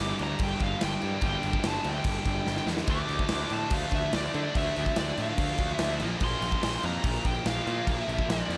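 This heavy, aggressive hard rock excerpt opens with a high-gain lead guitar carrying the melody over two double-tracked distorted rhythm guitars, one overdriven and one tight, that churn out a riff in the background. A growly, fuzz-laden picked bass sits up front beneath them, overdriven and direct. At 0.2 seconds a big acoustic rock kit joins with a punchy kick, a medium-tuned snare and bright crash cymbals, ringing in a large room and placed prominently in the mix. A drum fill lands at 2.5 seconds, just before the harmony moves from G minor to D minor, and then to B-flat at 6.0 seconds. The lead's warm, saturated tone soars above the dense, straight-ahead wall of guitars and bass, driving the passage with relentless force.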